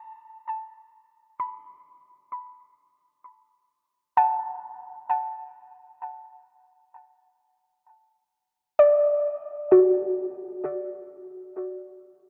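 A soft, round plucked synth tone opens the recording, playing alone throughout this ambient passage in free time, cut from a longer piece. Its gentle, dark voice blends triangle, sine and sawtooth waves with a noise layer, shaped by a filter pluck with a fast attack that decays away, and it sits up front, ranging from F#4 to B5. Chorus and analog delay thicken the pluck, while a wet plate reverb with a long tail gives the echo-heavy mix a spacious, lingering quality. The harmony rests on a single D chord from 0.5 seconds until the music falls away from any chord at 11.6 seconds. The mood is reflective and melancholic across its brief 11.9 seconds.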